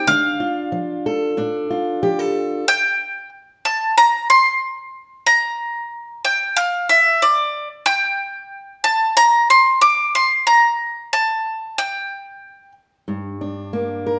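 A bright, double-strung bowl-back mandolin carries the melody up front in this yearning, wistful folk fragment, playing alone from 2.7 s to 12.7 s, while a fingerpicked steel-string acoustic guitar with fresh strings and audible finger squeak accompanies it at the opening and returns by itself at 13.1 s, the pair sitting in a moderate, large studio reverb.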